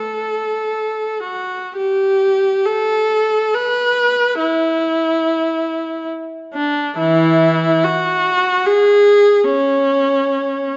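Lonely and yearning, this short fragment of a free-time classical piece features a single viola played solo, tuned to A4 = 436 Hz. The bowed viola sits up front with a rich, smooth, even tone and vibrato, ranging from E3 to B4; a brief opening phrase gives way at 1.8 s to a longer passage that runs to 10.8 s. A moderate scoring-stage reverb of 1.5 s surrounds the instrument, and the sound tops out below 7.8 kHz.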